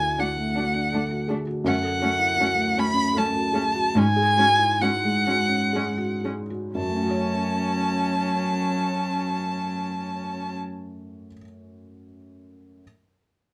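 A rubato pulse in three that slows from 0.6 to 6.8 seconds carries this fragile, longing passage of neoclassical piano and strings, cut from a longer piece. Up front, a dark, woody solo violin sings the melody with vibrato and a hushed sul tasto tone, while a soft, felt-muted upright piano, mellow and intimate with audible action noise, accompanies alongside a nasal, smooth-topped viola and a distant, floating cello playing a pure second line. Under light reverb, the strings fall away at 10.6 seconds, leaving the piano alone until 12.8 seconds.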